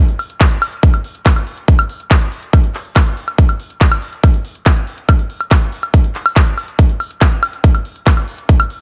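A hypnotic, alien mood runs through this short trance fragment, cut from a longer piece and moving at 141 BPM in a straight 4/4. A punchy electronic kick drum, layered and tape-warm, sits up front from 0.4 to 8.6 seconds and carries the heaviest weight in the mix, its sound re-recorded in a large room. Around it, a techno drum kit of handclaps, hi-hat and woodblock plays from 0.1 to 8.8 seconds, sitting lower in level but still up front, with smooth hats and a small-room character. Both drum parts have a layered, produced electronic finish. The overall sound is dry, with little reverb, giving the beat a close, tight presence across its single section.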